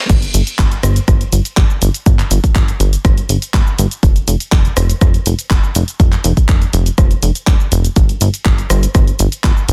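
A punchy electronic kick drum sits up front and drives this brief progressive house drop at 122 BPM in a straight 4/4, running from 0.1 to 9.5 seconds. Beside it, a funky, plucky analog bass built from sawtooth, pulse and sine tones hovers low between F1 and G1, its fast attack and decaying filter pluck shaped by sidechain pumping and a high-pass filter. A layered, tape-warm house kit of crash cymbal, handclaps, hi-hat, rim click and shaker sits lower in level, re-recorded in a large room, with soft clipping on the snare. The mood is bittersweet and dreamy, cut from a longer piece, and the whole passage holds to a single section through 9.7 seconds. The mix is dry and dense, with a heavily limited modern master.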